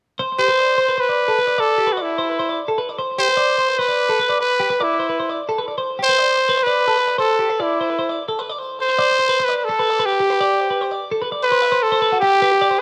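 This rock piece, cut from a longer work, moves at a brisk 299 BPM counted in eighths across an odd 7/8 metre with a straight feel in G major, giving it a bright, intricate mood. A clean, twangy twelve-string electric guitar opens at 0.2 s with picked, compressed arpeggios, shimmering through lush chorus and a slapback echo. At 0.4 s a raspy, growling trumpet takes the solo melody, its gritty, punchy pop-style tone carrying a light vibrato and its own slapback echo. Both parts sit up front, with the trumpet the more present of the two. The harmony shifts from a rootless G6 through D5 and G before a new section arrives at 11.4 s on a C major seventh colour. Light reverb and small-room ambience give the whole thing the rough, intimate character of a home demo.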